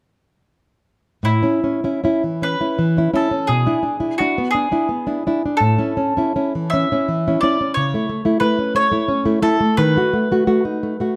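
Lyrical and warm, this fragment of a longer romantic duo in A major drifts through a rubato 6/8 at roughly 48-61 BPM, with a bowl-back mandolin picking the melody on its paired strings above a dark, fingerpicked nylon-string guitar accompaniment flecked with finger squeak, both heard from 1.2 to 11.2 seconds, close, detailed and up front in a moderate recital-hall reverb.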